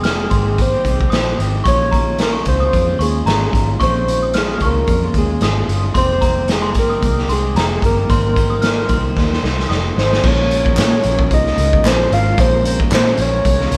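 Indie and bedroom pop in Bb dorian at 112 BPM with a gentle swing, this mellow, wistful fragment of a longer piece sets a round, chorused octave-layered synth lead against a chiming FM synth line that ends at 10.1 s, a slightly broken-up guitar through a small old amp with warbly pitch drift in the background, a foam-muted fingered bass, and an up-front garage drum kit with a punchy kick whose fill from 9.2 s leads into a second section where a faint sawtooth pad and distant group handclaps join, all in a moderate studio reverb like a band playing live in one room.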